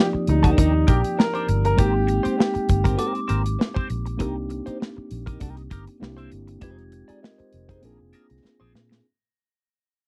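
A relaxed 99 BPM groove in 4/4 with a light sixteenth-note swing drives this smooth, lush 1970s-style soul excerpt in Eb major: a punchy kick, medium-tuned snare and hi-hat from an up-front studio drum kit sit over a dark, round, foam-muted fingered bass, and the drums close with a fill at 8.4 seconds. An intimate grand piano with audible action noise carries the melody only until 3.0 seconds, when a bell-like glockenspiel struck with hard plastic mallets enters as a ringing background texture. Throughout, a mellow tine electric piano and a compressed, picked clean electric guitar riff through wah move over Ebmaj7, Abmaj9, Cm7, C7, Fm7 and Bb7, all in a dry, close studio sound that fades out across the clip.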